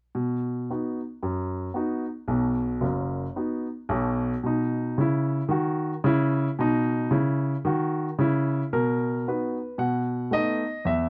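Swinging and exuberant, this short cut from a longer stride piano piece moves at 112 BPM in 4/4 with a lilting swing on the eighth notes. A baby grand piano plays alone from 0.1 to 11.1 seconds, ranging from F#1 up to F#5, and its tone is polished and present, sitting up front with a short sustain. The music rests on B major for most of its length; a new section begins at 8.7 seconds, and the harmony then shifts to a B7 chord at 9.8 seconds. Light reverb surrounds the instrument, and the overall production is dark and warm, with a faint mains hum beneath the playing.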